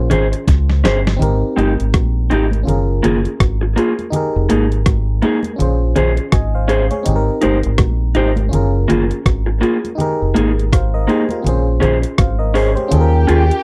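A glassy FM electric piano with a bell-like attack and a chorused warble opens this short lovers rock reggae excerpt alongside a deep, round fingered dub bass that sits dark and up front. From 0.1 seconds a detuned 8-bit drum machine joins with a thumpy kick, a medium-tuned snare, rim clicks and hi-hat, and it rolls through a drum fill at 0.5 seconds. A slightly broken-up, compressed electric guitar through a small old amp plays picked stabs with slapback echo, while soft-handed, ringing congas sit in the background. The tender, sweet groove moves at 82 BPM in 4/4 with a swung sixteenth feel in Ab major, cycling through Bbm9, Abmaj7, Gbmaj9 and Fm11. At 12.9 seconds the harmony turns to Eb9sus4 as a studio violin section enters with a soft-attack, bowed second line full of vibrato and portamento, all within a dry, close 1970s-style sound.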